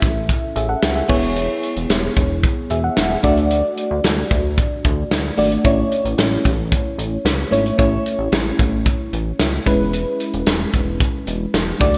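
From the first beat, an FM electric piano, a chorused synth bass and a modern studio drum kit enter together in this romantic, nostalgic 1980s-style pop passage, cut from a longer piece, at 112 BPM in 4/4 with a straight feel in A major. The electric piano carries the accompaniment with a mellow, warbling FM tone, a noise layer and a phaser, its notes striking quickly and then decaying. Beneath it, the glossy synth bass blends pulse, sawtooth and triangle waves with pulse-width modulation, ring modulation and a filter pluck, sustaining its notes through a chorus effect. The drums sit up front with a punchy kick, a medium-tuned snare, hi-hat, crash cymbal and tambourine, sounding roomy under gated reverb. The chords move from A to E6, then D, back to A at 5.6 seconds and E6 again, all within a lush hall and a bright, digital production.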